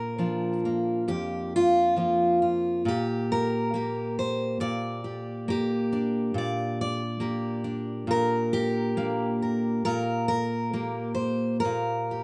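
Folk solo fingerstyle piece at 68 BPM in a rubato 4/4, this reflective, melancholic excerpt features a bright, full-bodied jumbo steel-string acoustic guitar fingerpicked up front with audible finger squeak across F2 to D5, moving from Bb to Gm/Bb at 2.9 seconds in light reverb over its 12.2 seconds.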